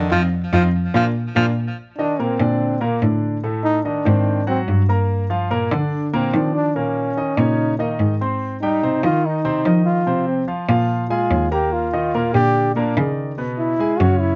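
Closely miked and nearly dry, this sophisticated, danceable jazz excerpt sets a warm, soft-attacked trombone up front with vibrato, over an intimate concert grand piano with audible action noise, deep bass and long sustain. A bowed cello with a biting, intense tone carries the bass line, while a breathy tenor saxophone with scooped notes and tape echo adds a second line only until 1.5 seconds. After a band accent, the trombone takes a solo from 1.8 seconds to the end, over chords that move through diminished, dominant seventh and major ninth colours.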